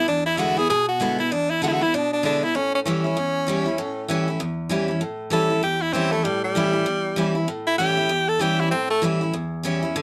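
Rock with a rowdy, rollicking spirit, this brief cut from a longer piece swings at 194 BPM in 4/4, moving from E7 to A7 in A mixolydian. An edgy, punchy tenor saxophone sits up front with close-miked forcefulness and pop-style vibrato, carrying the melody and taking a solo from 5.0 s before dropping out at 9.0 s. A bright, full-bodied picked dreadnought acoustic guitar, also up front, plays accompaniment through to 10.0 s, set in a moderate studio reverb.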